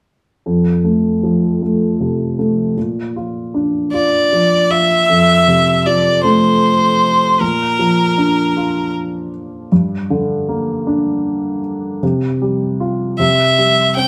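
A romantic, heartfelt six-eight pop ballad in F major at 52 BPM, cut from a longer piece, where an intimate baby grand piano with audible action noise and long sustain carries the accompaniment from 0.5 s, a clear, nasal violin with light vibrato and an airy bow sings the melody up front from 3.9 to 8.9 s and again from 13.2 s, and a wet studio reverb gives the sense of a band playing live in one room as the chords move from F and Bb through Gm to Csus4 resolving to C.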